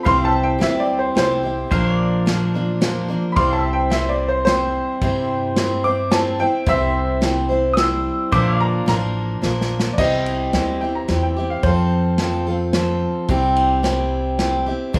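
This honky-tonk and classic country piece, cut from a longer work, moves at 109 BPM in 3/4 with a nostalgic, heartfelt mood, circling between C and Bb before moving through F. A worn, slightly detuned upright piano with a clear tone takes a solo through the first 10.0 seconds, playing high in its register, and drops out at 13.2 seconds. An up-front, full-bodied jumbo steel-string acoustic guitar is picked throughout as the accompaniment. Behind it, a clean, twangy pedal steel plays compressed, sustained chords with fingerpicks, slide and volume swells until the 10.0-second mark. Underneath, a pizzicato upright bass with gut strings gives a thumpy, woody low end. A distant, roomy drum kit played with bundle sticks, with dark cymbals and a tight kick, adds a short fill at 9.4 seconds, all set in a moderate studio ambience.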